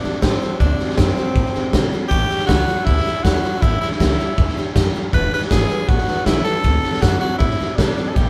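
A raspy, gritty tenor saxophone carries the melody with vibrato and a slapback echo in this rollicking, retro rockabilly excerpt, cut from a longer piece and moving through D7, A7 and E7 chords. Up front, a raw garage drum kit with a punchy kick, a medium-tuned snare and a dark, rolled-off top sets a straight 4/4 feel. In the background sit a woody, thumpy pizzicato upright bass on gut strings and a bright, full-bodied picked dreadnought acoustic guitar, with the band sounding as if it is playing live together in one room under moderate studio reverb.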